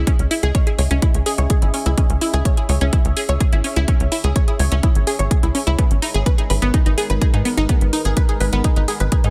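A deep, moody sawtooth pad with chorus and reverb holds sustained chords over a detuned unison pluck arpeggio drenched in dub echo and a tight, nasal sequencer bass, all pumping against a punchy, up-front kick and metallic hi-hats in this hypnotic, dramatic melodic techno excerpt at 126 BPM in C# dorian, moving from C#m to G#m at 5.8 seconds in a dry but echo-heavy mix.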